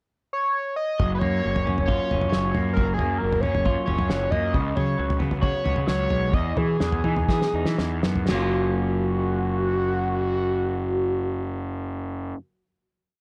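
A dark, lightly reverberant small-room sound frames this wistful, jangly indie rock piece in F# major, moving at 115-136 BPM in 4/4 before slowing from 4.5 to 8.3 seconds. A gritty, screaming synth lead built from detuned sawtooth and square waves carries hook phrases up front, coloured by distortion, chorus, phaser, slapback echo and vibrato, while a twangy, slightly broken-up guitar through a small old amp picks arpeggios over a punchy fuzz bass playing octave lines. A cloth-damped, thuddy drum kit with a fat snare, tight kick, toms and a china cymbal plays through a closing fill, stopping at 8.4 seconds as the other parts hold a final F#maj7 chord.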